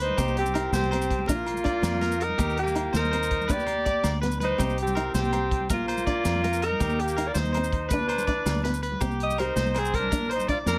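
Danceable and warm, this excerpt from a longer highlife guitar band piece moves at 109 BPM in a straight 12/8 lilt, set in C minor and tuned to A4 = 438 Hz. A clear, vintage-toned alto saxophone carries the melody up front, while a warm trumpet with vibrato and a smooth top plays a second line beneath it. A bright, twangy electric guitar, slightly broken-up, picks arpeggios, and a classical nylon-string guitar adds fingerpicked accompaniment in the background. A round, dark, foam-muted fingered electric bass anchors the harmony as it cycles through Cm, Bb, Eb and G/D, later shifting to Bm/D. A natural-sounding vintage kit with a punchy kick, medium-tuned snare and rolled-off top drives the groove and breaks into a fill from 3.7 to 4.6 seconds. High-tuned, distant congas, ringing agogo bells and grainy, mellow maracas fill out the percussion, and the whole ensemble sits in a small room ambience.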